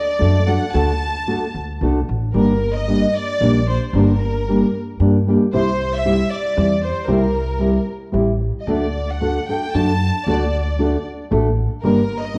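The worn, warbling sound of old cassette tape with drifting pitch and a moderate recital-hall reverb frames this short, festive and proud mariachi excerpt in G harmonic minor at 114 BPM in a rubato 3/4, where a rich, focused chamber violin section with vibrato carries the melody from the opening, an up-front, full-bodied nylon-string guitar accompanies from 0.2 seconds, and a woody pizzicato upright bass anchors the low end as the chords move from D through Gm and C back to D and Gm.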